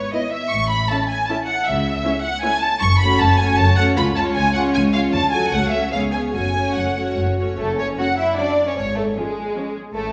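A graceful, spirited classical-period movement for string orchestra in a rubato triple metre, heard as a fragment of a longer piece, with an up-front first violin section singing the expressive, vibrato-rich melody over a smooth second violin line, lush even violas, background cellos, and double basses whose portamento-tinged bass adds depth, all bathed in the wet reverb of a resonant church or concert hall.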